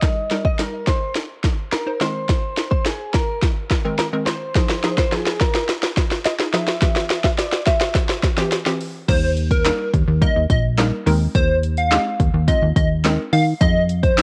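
A home cassette recording with light reverb and a digital ambience gives this dance-pop excerpt a hazy, lo-fi sheen, its mood bittersweet yet driving at 106 BPM in a straight 4/4. A clean, direct-recorded electric guitar carries the opening melody, compressed and picked, washed in lush chorus, analog delay and tape color, until it stops at 7.9 seconds. Beneath it, a hollow, bouncy square-wave pluck with detuning and chorus pumps against the sidechain, while an up-front house kit with a punchy kick, cracking snare, handclaps, hi-hat and crash, overdriven and tape-saturated, builds through a drum fill over Eb, Abadd9/Eb, Fm7 and C. At 9.1 seconds the drop arrives: a catchy, full-bodied unison lead, bright and evolving with a noise layer and filter sweep, takes over the tune, and a funky sawtooth-and-square analog bass with a moving notch joins, both pulsing with sidechain pumping as the chords cycle again.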